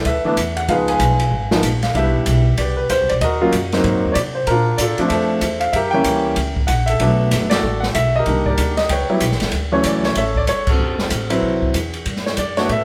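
Recorded live in one room with a moderate, large studio reverb, this sophisticated and playful jazz piano trio cut swings briskly from a longer performance. The clear, present grand piano sits up front with the melody over richly extended chords, backed by a woody, thumpy pizzicato upright bass and an airy, polished drum kit of dark ride and crash cymbals, hi-hat, medium-tuned snare and boomy kick. The band hits a shared accent at 7.5 seconds, moves into a new section at 9.5 seconds, and lands another accent at 10.6 seconds.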